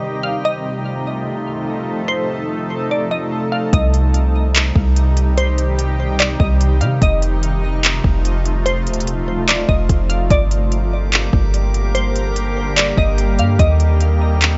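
A half-time hip hop groove arrives at 3.7 seconds, as an overdriven, up-front R&B drum kit of soft kick, crisp hi-hat and handclaps and a round, dark 808-style bass join a blurred granular cloud pad with sidechain pumping, a crystalline wavetable pluck melody treated with chorus, delay and a filter sweep, and a drifting glass-harmonics texture in the background that drops out at 3.7 seconds and returns at 10.6 seconds, giving this melancholic, spacious cloud-rap a dry sound with a softened top end.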